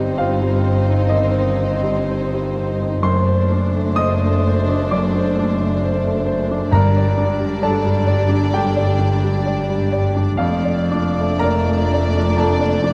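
A slow, rubato 4/4 pulse at 65 BPM carries this brooding, passionate romantic passage for piano and orchestra, cut from a longer piece, moving from Cm/G through D7/F# and Gm to Dm/F. Up front, the grand piano sings the melody across a broad range with present tone and long sustain, while a close, intimate violin section also carries a melody softly, sul tasto with light vibrato, and a second violin section, violas, a distant-sounding cello section and a smooth double bass section fill in the background with warm bowed playing. Timpani struck with medium mallets enter briefly from 6.7 to 8.0 seconds, all set in a dark production with moderate scoring-stage reverb.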